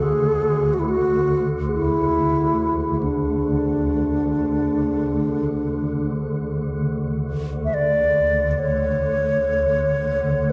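A pure, hollow alto flute carries the melody up front with vibrato, soft attacks and a trail of delay, over a swarming, detuned granular drone that evolves with its own reverb and a metallic bronze singing bowl, struck with a suede striker, ringing with slow beating in the background, all set in a spacious, calm world-meditative passage cut from a longer piece and soaked in dreamy plate reverb.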